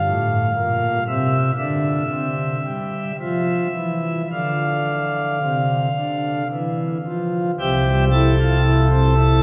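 This classical, chorale-style piece for solo pipe organ moves at a slow 56 BPM in 4/4, with a rubato feel that lets the phrases breathe in F major. The mood is majestic and reverent, carried by a full principal chorus in a romantic voicing that sits up front and spans from deep C2 tones to A5 in the treble. The harmony opens on a rootless D minor before settling onto C, then an open F fifth at 3.2 seconds, returning to C as the music turns to a new section at 7.6 seconds. A cathedral reverb with a 5.4-second decay surrounds the organ, giving each chord a long, resonant tail. The production is dark and warm, and this short excerpt is cut from a longer piece, ending at 9.4 seconds.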